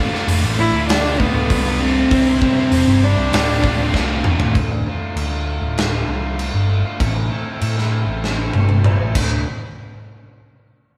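A bowed cello with vibrato carries a focused, smooth-topped melody from 0.6 to 4.2 s in this angsty, brooding quiet-loud alternative rock passage in D minor at 98 BPM, with a very quiet reedy tonewheel organ through a rotary speaker, a thick fuzz guitar and a double-tracked, scooped high-gain guitar in the background filling out the opening. A growly, punchy overdriven bass sits up front beside a big acoustic drum kit with a tight kick and rolled-off top, while a bright overdriven guitar riff carries on after the other guitars stop at 4.5 s, and drum fills mark the turns between sections. The band plays live together in a moderate stone room, and the clip is cut from a longer piece.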